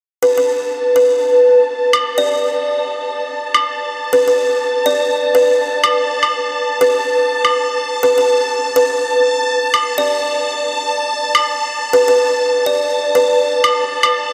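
Deep house with a deep, warm mood and a swung 16th-note feel, built from a close-miked, buzzing kalimba melody carrying a woody thumbnail pluck through analog delay from 0.2 seconds, a shimmering vintage string machine of sawtooth violins with soft attack and ensemble chorus sustaining a bright high texture, and a tape-toned, layered electronic woodblock entering at 1.9 seconds, all soaked in a huge, dreamy ambient reverb in this short cut from a longer piece.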